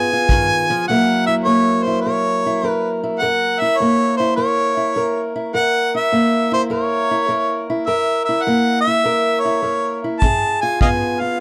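A dark, lightly reverberant sound frames this brief, rollicking excerpt of gritty acoustic country blues in F# mixolydian, swinging at 103 BPM in 4/4. Up front, a clear harmonica carries the jazz-inflected melody with light vibrato, scooped notes, tongue slaps and a soft attack, while a boxy, fingerpicked archtop guitar with fresh strings and audible finger squeak supports it over a long stretch on F#7, framed by C#7. A tight, airy kick drum, played with brushes, appears only briefly at 0.3 seconds and again at 10.2 seconds.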